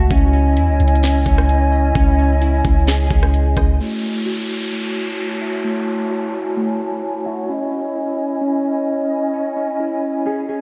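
A half-time trap groove opens this hazy, spacious cloud-rap excerpt, with an overdriven kit of knocking kick, sharp snare, rim click and metallic hats over a soft, round 808 bass, until the kit drops away at 3.7 seconds and the bass at 3.8. Throughout, a hollow flute section with vibrato holds pumping, filtered chords up front while glassy, detuned digital keys spin chorused arpeggios, and a dark, clean electric guitar adds brief melodic fragments in the background. An electronic downlifter sweeps through the middle until 7.5 seconds, all set in a dreamy mix soaked in lush hall reverb.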